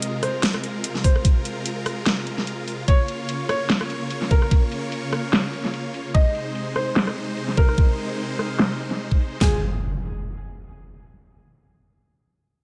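A natural-sounding baby grand piano carries the melody over bright, detuned supersaw chords and a filtered layer of hi-hat, rim click and snare as this heavy wobble dubstep excerpt opens on a chaotic, menacing note. The piano sits back in the mix with a dub echo trailing its lines, while the lush sawtooth chords are roughened by vintage 12-bit sampler grit and pumped by sidechain compression as they move through F minor, B-flat minor and A-flat. The first drum layer is low-pass filtered on its snare, hats and cymbals, with a filter sweep running across it, giving the hats a muffled edge under a half-time, swung feel. At 1.0 seconds a second, louder kit drops in up front with a kick and a huge, tape-toned snare. At 9.4 seconds the music returns to F minor as an electronic impact hits, all set in light reverb and digital ambience.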